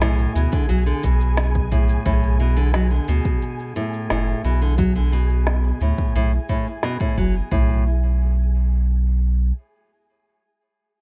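Delicate and intimate, this short folktronica cut moves at 88 BPM in a straight 4/4, sitting on a Bm7 chord in B dorian before the harmony drops away at 7.5 seconds. A bright, full-bodied nylon-string guitar is fingerpicked in low arpeggios with a delay, while a round, sine-like sub bass sits up front, mellow and sustained, carrying on alone until 9.5 seconds. An electronic kick with a deep, tape-warm thump enters at 0.5 seconds, and a woody electronic snare with cabasa runs through low-pass filtering, with a filter sweep on the drums across the opening stretch. In the background, a grainy, flickering, detuned granular texture hovers with a slow attack, long release and its own reverb. The mix is close and dry overall.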